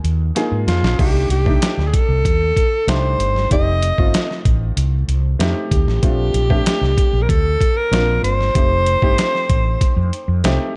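A breathy, whispered alto saxophone with scooped notes and vibrato enters at 0.7 s to carry the melody in this nocturnal, bittersweet slice of polished 1980s jazz-funk pop at 95 BPM, set over a growly, round fretless bass, a gritty, compressed, pitched-down sampler-style drum kit with a thumpy kick and a fill at 0.4 s, and a quieter, intimate baby grand piano with audible action noise and subtle chorus, within a dark, dry mix.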